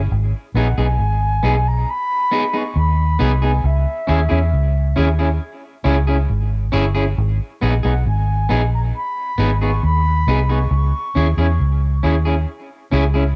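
Roots reggae with a hypnotic, laid-back mood, cut from a longer piece and moving between G# minor and C# minor in a home recording on cassette with light reverb and a small room ambience. A dark, foam-muted vintage electric bass sits round and punchy up front from 0.0 seconds, joined at 0.6 seconds by a twangy, slightly broken-up electric guitar in the accompaniment. An airy, mellow concert flute carries the melody from a distance with a straight tone and soft attack, both it and the guitar coloured by cassette tape and tape echo.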